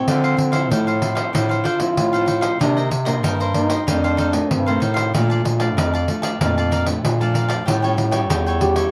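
A growling, raspy trombone opens this lively, bittersweet samba and choro piece in D minor, carrying the melody at 95 BPM in a straight 4/4 from the very first moment. Its dark, gritty tone with vibrato has a jazz feel and is close-miked, taking a solo that runs the full 8.9 seconds. Beneath it, a bright, crisp picked cavaquinho and a small, fingerpicked nylon-string guitar share the accompaniment, while a warm bass clarinet in classical style holds the bass line up front. A jingly pandeiro with a live-room sound keeps the percussion going. The harmony moves from Dm9 through Cm9, F7 and Bbmaj7 before landing on A7b13 at 7.7 seconds, all captured with close, detailed microphones and light reverb in this short cut from a longer piece.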